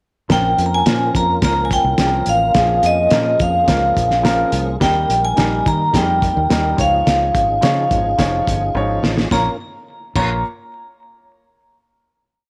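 Light reverb and small-room ambience frame this urgent, driving, uptempo 1960s-style soul piece in Bb dorian at 107 BPM, which moves from Bbm through Eb and Dbadd9 before settling on a final chord at 9.3 seconds. Up front, a ringing, metallic vibraphone with tape echo plays a motif-based melody of call phrases over a muffled, cloth-damped drum kit with a fat snare on all four beats, dark cymbals and a fill at 8.8 seconds. Underneath, a punchy, foam-muted fingered bass plays a syncopated line with chromatic approach notes, an intimate grand piano with audible action noise plays quarter-note chords with grace notes, and a round, dark tonewheel organ holds sustained chords through a fast rotary speaker until 9.6 seconds.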